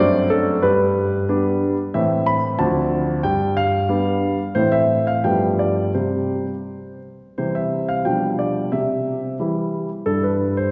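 A polished, present grand piano carries this graceful, playful classical-period sonatina in C major alone, moving at 90 BPM in 2/4 with a supple rubato feel and spanning from D2 up to B5. Its harmony passes through D7/F#, G, Am, Dm7 and G7 before settling on C, and the opening phrase returns at 7.4 s, this time centred on C and G7/B and closing on G at 10.1 s. The up-front piano sits in a wet, resonant concert hall, and this brief passage is cut from a longer piece.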